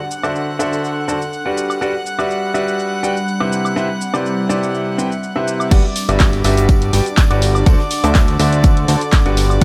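A bright, brilliant grand piano riff sits up front with audible action noise, 12-bit sampler grit, a low-pass filter, digital delay and sidechain pumping, carrying this uplifting, feel-good piano house excerpt over a D7 to Gmaj7 change. Beneath it, a reedy chamber violin section holds sustained chords with light vibrato and gut-string tone, a dark, nostalgic, warbling tape-like pad adds chorused lo-fi texture, and a dry, punchy analog drum machine ticks with handclaps, hi-hat, shaker, woodblock and crash. At the drop at 5.7 s, a thick, fat, detuned analog bass with tube saturation, a layered, up-front electronic kick and a background acoustic rock kit of hi-hat, snare and tambourine arrive, all in a small room with light reverb.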